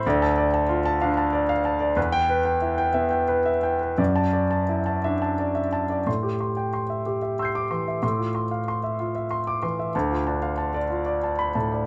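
In a rubato 6/8 lilt, this brief, intimate excerpt of neoclassical minimalist piano unfolds as a melancholic solo on a concert grand heard up front in light reverb, its deep bass, long sustain and audible action noise giving a natural closeness as it ranges from D2 to C7 and moves from Dm through Em and Dadd9/F# before turning at 6.1 seconds to Am7, Fmaj7/A and back to Dm.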